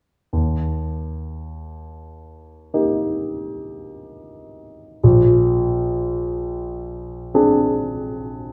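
Classical excerpt in Eb major, tender and lyrical, moving at a slow, rubato 48-53 BPM in 4/4, where an up-front, mellow grand piano with dark tone and short sustain plays an accompaniment from 0.3 to 8.5 s, resting on Eb before shifting to Bb9 at 5.0 s, tuned to A4 = 445 Hz and set in a wet recital hall reverb with a soft, rolled-off top end.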